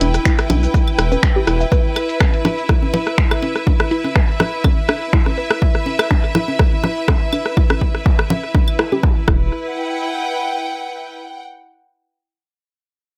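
A squelchy, detuned blip pluck plays the riff in this sparse, clinical minimal techno piece, treated with chorus, tape and delay and set in the background. It is joined from the start by a rubbery square bass, a clear bowed string section and an overdriven analog drum machine of snaps, hi-hat and shaker, with a filter sweep running through both the pluck and the drum machine, and sidechain pumping on the pluck, bass and strings. Layered rim clicks, congas and claves in tape echo come in at 0.1 seconds, followed by a punchy, up-front kick at 0.3 seconds; the bass drops out early and returns briefly near 9.3 seconds, and once the other parts stop, the symphonic strings hold on alone until 11.4 seconds.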